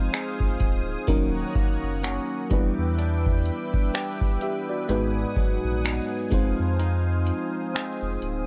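A dry, gritty recording with little reverb frames this moody, longing contemporary R&B excerpt, cut from a longer piece and carried by a swung sixteenth-note feel over minor seventh chords. A booming, overdriven analog drum machine sits up front with finger snaps, metallic hi-hat and a deep kick, while a round sine sub bass enters at 0.4 seconds. A glassy, bell-like FM electric piano with chorus, a lush detuned unison pad and a bright, twangy clean guitar playing arpeggios through phaser and analog delay fill out the harmony throughout, and the kick drops out at 6.8 seconds.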